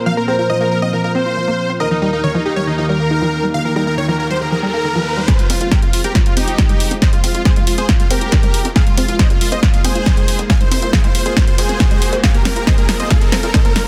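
A clear, slightly boxy baby grand piano opens this bittersweet uplifting trance excerpt at 138 BPM in F minor, playing a second line through dub echo over a lush, warbling pad whose detuned unison chords pump with the sidechain. A huge, thick supersaw carries the emotional melody with vibrato and digital delay, while a tight, mellow sequenced synth traces arpeggios in the background, with chorus and delay on its driving pulse. The chords move from Bbsus2 to Ebadd9 before a background riser enters at 3.6 seconds, and the piano drops out as the section changes. At 5.3 seconds a heavy, up-front electronic kick and a techno kit with a punchy snare and tape-toned hi-hats arrive, joined by a very quiet, plucky sequencer bass. The harmony settles on Fm and returns to Bbsus2 as a build-up, drum fill and filter sweep on the arpeggio push the energy forward, all inside a dense, heavily limited modern master with light reverb.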